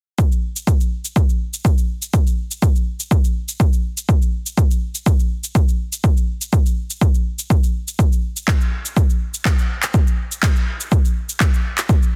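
A layered, overdriven, punchy electronic kick drum sits up front in this earthy, spiritual afro house excerpt, joined by a quieter electronic shaker and handclaps over a lightly swung 4/4 groove in digital ambience, all pressed into a dense, heavily limited modern master.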